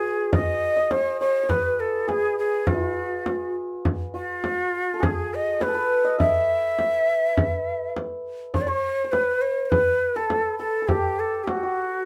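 Set in a light reverb, this passionate excerpt of Persian modal ensemble music puts a breathy, bright end-blown ney up front on the melody, with vibrato and a crisp attack, over a mellow, shimmering santur playing a second line and a deep, dry frame drum struck with soft hands, before a new section begins at 8.5 seconds.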